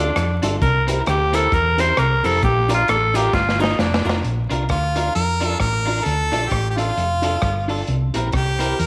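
Bouncy and cheerful, this swung ska clip opens with a raspy, forceful tenor saxophone solo up front over a punchy, round hollow-body bass, a crunchy, gritty breakbeat kit, dark woody piano stabs and a clean semi-hollow guitar, both carrying slapback echo, with a very quiet mellow guitar riff and a grainy cabasa underneath. After a drum fill from 3.3 to 4.2 seconds, a bright harmonica takes the melody at 4.7 seconds, its scooped notes sitting forward. The whole is wrapped in echo-chamber reverb, small-room ambience and vinyl crackle.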